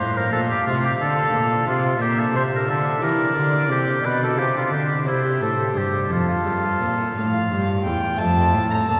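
Classical baroque-style sonata movement with continuo in F major, flowing and serene at 59 BPM in a straight 6/8, cut from a longer piece. A dark, nasal gut-string violin carries the melody from a distance while a warm, up-front oboe sings a second line beneath it, and an airy, brilliant harpsichord with three sets of strings plucks the accompaniment over a rich, lightly vibrato cello bass. All four play throughout the 9 seconds, heard from further back in a cathedral whose long, wet reverb lingers around the harmonies as they move from F through D minor and G minor toward a closing return to F.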